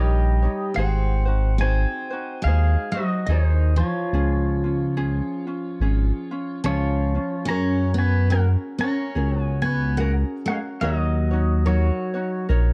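A smooth, gliding synth bass sits up front, its dark sawtooth-and-square tone sustained with portamento, beneath a sunny, relaxed Hawaiian piece at 72 BPM in 4/4 with a light swing on the eighths. A clean, twangy electric pedal steel guitar carries the melody with slide, fingerpicks and volume swells. A full-bodied picked dreadnought acoustic guitar plays a second line, and a light fingerpicked ukulele accompanies. The tune moves from D-flat major to F-sharp major at 7.5 seconds, all in a dark, warm small-room sound that is cut from a longer piece.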